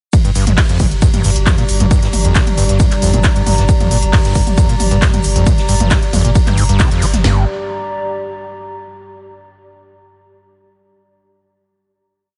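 Driving peak-time techno in G minor at 135 BPM, industrial and intense, where a punchy four-on-the-floor kick and cracking snare lead a layered electronic kit of claps, smooth pumping hats, ride and low toms over a faint background breakbeat of shaker, hi-hat and rolled-off snare, while a deep round sub bass rumbles between the kicks, a squelchy, gritty acid line loops seven steps against the bar, a warbling lo-fi pad shifts dark chords, an eerie metallic drone enters at 1.2 seconds, and a band accent at 6.8 seconds gives way to a final G minor chord held by the pad until 9.0 seconds.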